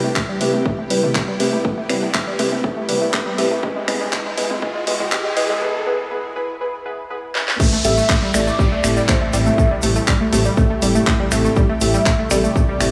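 Progressive house at 121 BPM in A minor, this emotional, expansive passage is cut from a longer piece and moves from a build-up into a drop at 7.6 seconds. A very quiet, shimmering pad holds ethereal chords under a detuned, wave-folded unison pluck whose arpeggios run through a filter sweep, pumping against the sidechain and trailing dub echo. A soft, nasal chord stab adds dark harmony over Cmaj7 and E/B, while a riser and downlifter sit in the background and overdriven analog congas and toms add texture until 5.1 seconds. A punchy, up-front kick and a house kit with a cracking snare, claps, snaps, hi-hat and crash drive the groove, and after a short break and a drum fill the drop lands on Am7. There a velvety lead with vibrato carries the melody, a thick, saturated sub bass fills the low end, and a grainy egg shaker sits close in the background, all set in a lush hall reverb.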